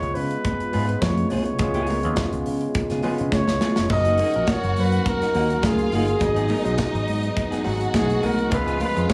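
Sultry and driving, this short disco excerpt is led by a breathy, whispered flugelhorn that sits up front with an intimate, close-miked jazz voice, soft attacks and warm vibrato. Beneath it a growly fingered electric bass and a modern studio drum kit, with its tight kick, medium-tuned snare, hi-hat and splash cymbal, carry the straight 4/4 groove. High-tuned congas enter at 0.5 seconds, ringing with a vintage, band-limited tone and hard hands, though they stay very quiet. A barky tine electric piano, a dark semi-hollow electric guitar with tremolo and a very quiet, mellow French horn section holding sustained chords fill out the background. After a drum fill, a clear, lush studio string section enters at 3.9 seconds with a smooth top, adding a second line over chords that move from C#7 to F#6 and G#m7 before returning to C#7. The sound is close and dry, with only a small room around it.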